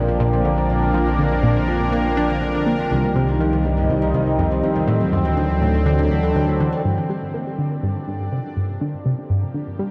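From the first moment an airy, bright detuned-sawtooth pad sustains chords with chorus, a ringing concert harp plays arpeggios through delay, a tight, driving detuned synth sequence repeats its riff, and a deep, round sine sub bass holds the low end, all in this expansive, hypnotic 122 BPM sequencer-driven space music cut from a longer piece, moving through Bb, Cm7 and D7 under a huge ambient reverb until the sub bass stops at 6.8 s, where the harmony settles into G dorian on Gm7 and a filter sweep moves across the synth sequence through 9.9 s.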